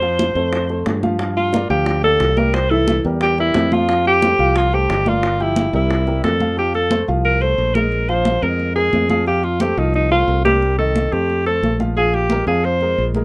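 An alto saxophone, warm and scooping into its notes with vibrato, carries a sunny melody up front from the start of this lively Afro-Cuban jazz excerpt at 178 BPM in F major, backed by a dark, woody upright piano whose action noise can be heard, a growly fingered electric bass, and bright, hard-handed congas. Round, low-tuned bongos sit in the background alongside the congas until 6.6 seconds, as the harmony moves through chords such as Fadd9, Gm7 and C7 and later touches on Bbsus2 and Cm7. A light reverb surrounds the group.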